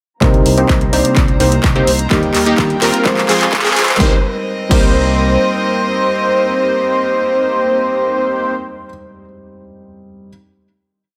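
From 0.2 s, this emotional, anthemic festival progressive house build at 127 BPM in C minor brings in a punchy, overdriven four-on-the-floor electronic kick and a big-room dance kit with huge snare, claps, hats and crash driving a drum fill, while a fat, saturated analog bass plays eighth notes, a bright supersaw stab riff in dotted-rhythm chords and a thick, detuned unison lead arpeggio both sweep through filters with tape echo, a dark, intimate baby grand piano with audible action noise holds syncopated chords, and a floating chamber string pad sustains beneath, the pitched parts pumping with sidechain, until a very quiet riser at 2.7 s leads into the final Cm7 chord at 4.0 s.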